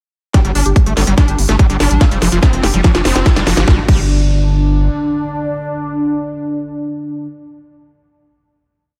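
A screaming distorted acid line tears through this short, intense and alien psychedelic trance piece. Its squelchy, aggressive sawtooth tone is roughened by distortion, chorus, cassette-tape grit and dub echo, and its accents and slides trace a six-step loop that drifts against the bar. Beneath it, a tight, up-front electronic kick drives a four-on-the-floor beat, while a garage drum kit adds a cracking snare, crisp open and closed hats and crash cymbal; both drum parts are tape-warmed, re-recorded in a large room, and carry a drum fill through the build-up. A round, deep analog bass rolls in sixteenth notes with an evolving, wave-folded square-and-sine tone. Over this, a thick, detuned unison lead repeats its riff over a pedal note through phaser, sidechain pumping and dub echo, and it sustains into the final chord, which arrives at 3.7 seconds and holds until 7.0, while a very quiet, bright blip pluck offers short answering phrases early on and background risers and impacts mark the transitions in a dry mix with little reverb.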